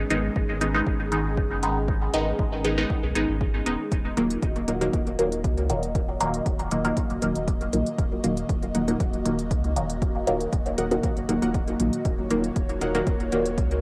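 An airy, breathy pad and a round sub bass open this nocturnal, cavernous dub techno excerpt at 118 BPM, joined by a punchy kick, smooth hi-hats and an up-front, muted chord stab soaked in dub echo and phaser over G#m moving to D#m, while a second, detuned stab enters softly in the background at 4.7 seconds, all colored by cassette-tape grit and a light digital ambience.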